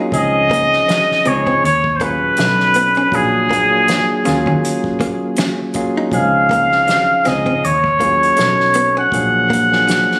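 A relaxed 80 BPM groove in 4/4 with a gentle swing on the 16ths sits under this warm neo-soul R&B excerpt in Db major, cycling through Dbmaj9, Ebm11, Cb9 and Bb7b13. Up front, a straight-muted trumpet carries the melody with a nasal, breathy tone, light vibrato, scooped notes and tape echo, over a barky tine electric piano heard through a combo amp and a picked, compressed hollow-body archtop guitar playing a dark, clean second line. Beneath them, a foam-muted fingered electric bass gives a round bottom, and an unplugged kit played with bundle sticks adds hi-hat, a fat snare and a punchy kick, all captured on a phone in a small room with light reverb.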